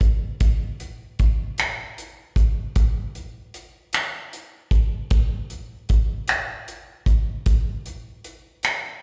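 Finger snaps, hi-hat and kick drum open this short R&B fragment, cut from a longer piece, with an acoustic soul drum kit playing alone from 0.0 to 8.8 seconds. The mood is sultry and late-night, carried by a straight feel in 6/8. The kit sounds warm and up front, with a tight kick and a rolled-off top. The drums have a small-room character and carry little reverb of their own. The whole passage has the sound of a live gig heard through the venue's PA, set in the ambience of a recital hall.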